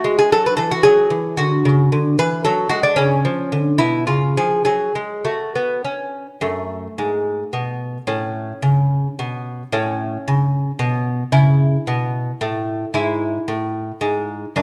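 In an unhurried triple metre at 111 BPM, this baroque-style classical dance moves with a rubato feel that lets the beat stretch and settle naturally. A solo lute carries the whole fragment in F# minor, fingerpicked with a delicate touch on gut strings whose doubled courses, some tuned in octaves, give each note a gentle shimmer across a range from F#2 up to B4. The harmony opens on F# minor and passes through a Bm13/C# and C# before returning home, and a second phase beginning around 6.4 seconds brightens toward Aadd9, A and finally E/G#. The mood is serene and flowing. The lute sits up front in a moderate recital-hall reverb that adds a soft, airy bloom, and the passage is cut from a longer piece, ending at 14.6 seconds.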